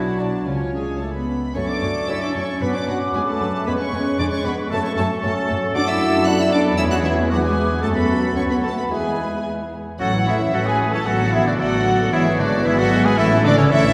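A quick, spirited classical-period orchestral passage opens with violins carrying the melody over a clear clarinet, dark violas, distant horns, cellos and double basses, joined at 0.2 s by a very quiet, floating second violin line, the strings all bowed sul tasto, most with light vibrato. At 1.6 s a clear oboe, a pure flute section with rolled-off highs and a mellow bassoon add further lines as the harmony moves from minor toward a major key. From 10.0 s a bright, punchy trumpet adds stabs, and the whole is heard from further back in a reverberant scoring stage in this excerpt from a longer piece.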